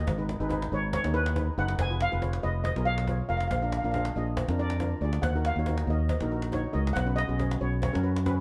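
Captured live by a band in a single stone room with moderate reverb, this dramatic, intense calypso fragment sets a mellow, shimmering steel pan melody over a dry, close-miked steel pan accompaniment, with a growly, punchy fingered electric bass up front, a woody cajon struck with hard hands, and a metallic cowbell in the background, moving through Abm, Fdim, Bb, Ebm and Bsus2.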